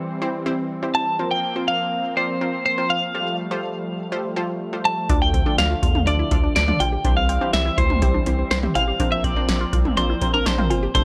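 Synth-pop with a driving, melancholic mood, this excerpt opens on a brassy analog pad with chorus sustaining chords, joined almost at once by a lush, detuned unison pluck and then a bright, clean twelve-string electric guitar carrying the melody up front through tape echo. At 5.1 seconds the groove fills out as a round, dark analog bass, a squelchy resonant blip pluck playing arpeggios behind a phaser, and an electro analog drum machine with deep kick, punchy snare, metallic hats, cowbell and toms all arrive together. The sound is dry and gritty, moving through chords from C to Bbsus2, Fadd9 and Dm.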